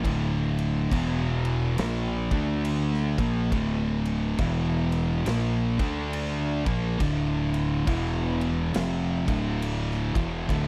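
A growling, direct-amped overdriven fingered electric bass underpins this ominous, brooding 10.7-second stoner and doom metal cut at 69 BPM in D minor with a swung 4/4 feel, as two dark, picked fuzz guitars and a double-tracked, overdriven sludgy guitar sit in the background playing a riff over D5, E5 and Dm, alongside a big acoustic rock kit with a punchy kick, medium-tuned snare and bright crash cymbals, in a dry, close 1970s-style studio sound.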